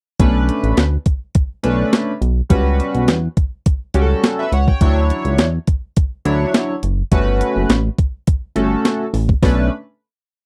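A dry, close recording in a 1970s studio style puts every part up front, giving this short, complete piece of early-eighties boogie funk a tight, late-night feel. It moves at a danceable 104 BPM in a straight 4/4, in B minor, with the harmony cycling through Bm9, A13, Dmaj9 and Gmaj9#11 before landing back on Bm9 as a final chord at 9.4 seconds. A clean 12-bit digital drum machine drives a mid-tempo boogie beat with a thumpy kick, medium-tuned snare and hi-hat, its sampler-style sound overdriven and re-recorded in a small room, and it stops at 9.6 seconds. Underneath, a chorused synth bass built from pulse and sawtooth waves with pulse-width modulation and a filter pluck plays a fat, syncopated boogie line with slides, glossy yet mellow in tone. A chorused polysynth, retro and warm with pulse, sawtooth and sine layers, a sub octave, ring modulation and a filter sweep, pushes the chords in drop2 voicings and decorates them with grace notes and short fills. 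Both synths carry on to 9.7 seconds, closing the piece on that last chord.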